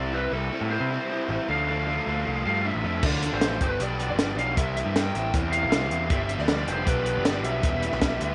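A straight 4/4 indie rock pulse with a wistful, jangly feel drives this short excerpt, as two raw, picked garage guitars (one lo-fi, with analog chorus and tape echo) play overdriven riffs under a cranked lead guitar's echoing melody and a growling, up-front picked bass, before a compact cocktail kit with dark cymbals, a high-tuned snare and a tight kick enters at 3.0 s and a very quiet, reedy tonewheel organ with key click and slow rotary speaker adds sustained chords from 6.1 s, set in a small room with light reverb.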